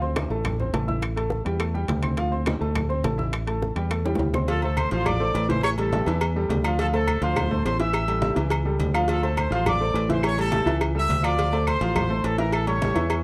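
Driving and fiery, this salsa excerpt sets a bright, woody upright piano with audible action noise and a dark, round fingered electric bass up front over very quiet, thick-skinned congas, tight high bongos and cowbell, ringing metal-shelled timbales with agogo bells and background claves, until a drum fill leads a bright, tight trumpet section with light vibrato to take the melody at 4.5 seconds.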